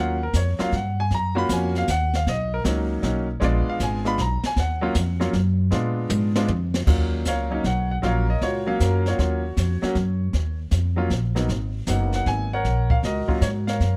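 Cool and late-night in mood, this jazz piano trio swings in a lilting 3/4 at 156 BPM, set in E-flat minor and tuned slightly sharp of standard pitch. A clear, intimate baby grand carries the melody up front, with the soft clatter of its action audible, and it takes a solo through the opening 6.9 seconds. The pizzicato upright bass sits close beside it, woody and thumpy on steel strings. Played with brushes, the drum kit enters at 0.3 seconds, pairing dark cymbals and a high-tuned snare with a boomy kick, and it adds a fill just before the second section begins at 6.9 seconds. The harmony moves through rich minor ninth and altered dominant chords, circling back to E-flat minor and briefly visiting A-flat minor ninth. Captured with close, detailed microphones in a dry studio room, the recording feels immediate, as if the listener sits beside the players, and the passage is cut from a longer performance.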